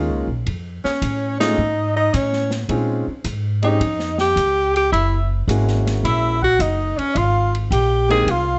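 A smoky, cool small-group swing and bop fragment opens on an intimate concert grand piano with audible action noise and a woody, thumpy upright bass, both up front, before an acoustic drum kit with dark cymbals and a boomy kick enters at 0.5 seconds. At 0.8 seconds a breathy tenor saxophone takes the melody with vibrato and scooped notes, while a growling, raspy alto saxophone carries a second line from the background. The band hits an accent at 1.3 seconds, and the whole is lightly reverberant and cut from a longer piece.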